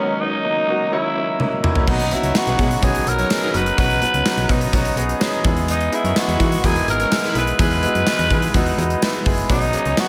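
1980s-style pop excerpt with a glossy, romantic mood, where a breathy, raspy tenor saxophone carries the melody over a clear baby grand piano, both touched with slapback echo, while a glassy FM pad glows in the background at the opening and close, a gated drum kit with punchy kick enters with a fill at 1.4 seconds, a snappy slap-like FM bass arrives at 1.9 seconds, and very quiet, fat analog synth brass stabs join at 2.2 seconds, all set in a lush hall reverb for a big arena sound.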